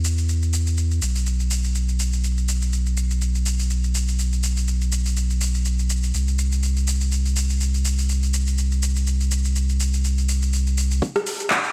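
Deep house at 123 BPM in 4/4, this hypnotic, moody clip is cut from a longer piece and carries a 56% swing on the sixteenths. A round, mellow sine sub bass sits up front from the start, moving between B1 and E2 with a fast attack and sustained notes, thickened by tube saturation and pumping under sidechain compression. Alongside it, a layered, produced electronic drum kit of handclaps, rim clicks, shaker and metallic hi-hats runs through overdrive, sitting lower in the balance. The bass stops at 11.0 seconds, when an overdriven, deep electronic kick drum with a high-pass filter enters for a brief hit, and the kit carries on to 11.7 seconds. Light reverb and a bed of vinyl crackle round out the sound.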